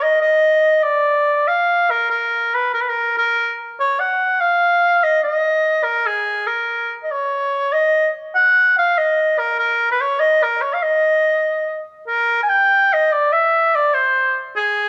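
This Mexican folk recording is a short cut from a longer piece, carried by a single oboe in a dramatic, passionate mood. It moves in 6/8 at 96 BPM counted in dotted quarters, though the rubato feel lets the pulse stretch and breathe, and it sits in E-flat minor. The oboe plays solo from 0.0 to 14.9 seconds, ranging from Ab4 up to Ab5 in a classical style, with a warm tone and light vibrato. It sounds roomy and set back, held in a moderate recital hall reverb with a 1.9-second decay that gives each phrase a lingering tail. The melody unfolds in an opening passage before shifting into a new section at 12.1 seconds, which runs to the close of the cut.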